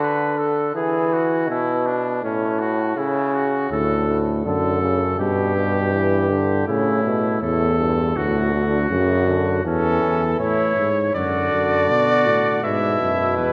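A trumpet and a clear, distant trombone open this lively, stately classical canzona for brass ensemble in D major at 81 BPM, joined at 3.7 seconds by a softly attacked bass trombone with light vibrato and at 9.7 seconds by an up-front cornet carrying the melody, all set in a wet church reverb and cut from a longer piece.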